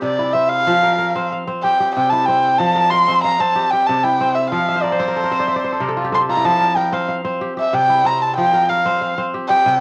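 This home recording on cassette sits in a moderate booth ambience with a short decay. The piece is West African traditional string and xylophone music in F major, moving at 125 BPM in a straight 12/8 with a warm, flowing mood, and this brief cut comes from a longer performance. A single dark erhu carries the melody close, intimate and up front. It is bowed with an airy tone, soft attack, light vibrato and gliding portamento, and its sound carries the grain of cassette tape. Beneath it, an acoustic kora fingerpicks warm, ringing, crisp arpeggios across its low and middle range, also placed up front, and adds a fill from 4.7 to 6.5 seconds. The harmony sways between C and F, with the erhu soloing through the whole 9.8 seconds.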